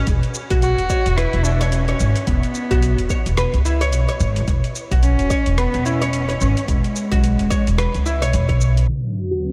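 A swung sixteenth-note groove in 4/4 drives this hypnotic, mystical organic downtempo fragment, built on a deep, tape-toned electronic kick and a gritty, sampler-style kit of muffled hi-hat, rim click and shaker, beneath a thumpy, sidechain-pumped gut-string upright bass. Plectrum-plucked fretless oud arpeggios with double strings, filtered and echoing, open the piece before a dark, bowed solo cello with vibrato and delay enters at 0.6 seconds. At 8.9 seconds the harmony shifts to B minor as a detuned sawtooth analog pad with chorus and an up-front sub drop arrive for a closing impact, heard in a lightly reverberant studio ambience.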